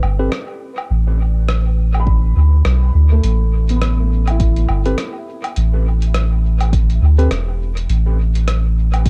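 A dry, echo-heavy mix frames this spacious, meditative ambient dub fragment at 103 BPM in A minor with swung sixteenths on an Asus2 chord, where a round, tube-saturated sub bass sits up front beneath mellow felt-muted upright piano arpeggios that carry audible action noise through a filter sweep and dub echo, a muffled, pitched-down, tape-warm sampler-style kit of hi-hat, rim click and woodblock trails its own dub echo, a clean tine electric piano drops brief echoing stabs at 0.2 s and again from 4.9 to 7.3 s, and a deep layered electronic kick enters in the background at 2.1 s.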